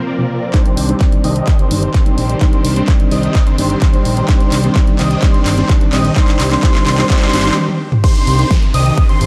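A straight 4/4 pulse at 128 BPM drives this anthemic, emotional slice of festival progressive house in C minor, cut from a longer piece. A punchy, up-front electronic kick and a layered big-room kit with a huge snare, handclaps, hi-hat, toms and crash carry a build-up with a drum fill from 0.5 seconds, pausing in a stop at 7.6 seconds before the drop lands at 8.0 seconds. Over Bbsus2 moving to Cmadd9, a euphoric, bright supersaw lead plays the riff through phaser, delay and a filter sweep, while a thick unison lead sits in the background with high arpeggios and vibrato. A fat analog bass, a soft felt-muted upright piano with audible action noise, and both synth leads pump with the sidechain, and the piano and both leads also carry delay. Very quiet bowed strings hold sustained chords with light vibrato, and a faint electronic riser, swell and downlifter add lift toward the drop, all set in a moderate recital-hall reverb with a dark, warm production.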